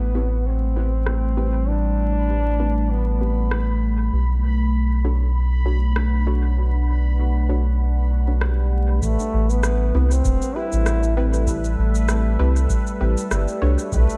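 Hazy and steeped in vinyl crackle, this meditative ambient dub fragment rests on a dark, detuned pad that carries a filter sweep through its first 9 seconds, above a round, up-front sub bass and a bubbling, resonant stepped-filter texture. A muted, chorused chord stab with dub echo sits in the background alongside an electronic rim click and shaker, which enter at 1.1 seconds under filtering and echo. A mellow, vintage trombone with light vibrato plays the solo melody through dub echo, and a deep, tape-warm electronic kick joins at 9.0 seconds as the chords, having moved from Am7 to Bm7, return to Am7.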